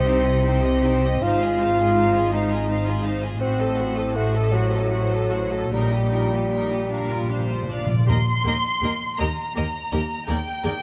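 Lyrical and tender, this slow romantic orchestral passage in a gently swaying 6/8 moves with a flexible rubato and is cut from a longer piece. A violin section carries the melody with a warm, smooth vibrato while a second violin section sings a clear supporting line beneath it. A mellow solo bassoon sits close and up front in the accompaniment until 7.7 s, alongside a focused viola section tucked in the background. Cello and double bass sections anchor the harmony with a rich, even bowed bass, the cellos sounding more distant. Soft-mallet timpani with a round tone enter in the background at 5.7 s and play a short fill, all set in a moderate concert hall reverb as the music settles into a new section at 8.1 s.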